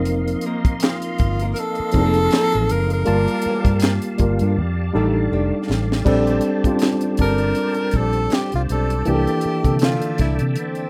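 A worn, slightly out-of-tune tine electric piano with light overdrive opens this smooth, warm neo-soul R&B excerpt at 80 BPM in Bb major, joined at once by a bright, reedy tonewheel organ with key click and chorus vibrato through a slow rotary speaker and a dark, round, foam-muted fingered bass, while a tight, dry funk kit with a high-tuned snare, crash, hi-hat and handclaps swings on the sixteenths, a small fingerpicked nylon-string guitar sits in the background, and a breathy, whispered tenor saxophone enters close-miked and intimate at 0.8 seconds, with a drum fill from 4.6 to 6.1 seconds leading into a new section, the whole captured as a rough home demo with little reverb.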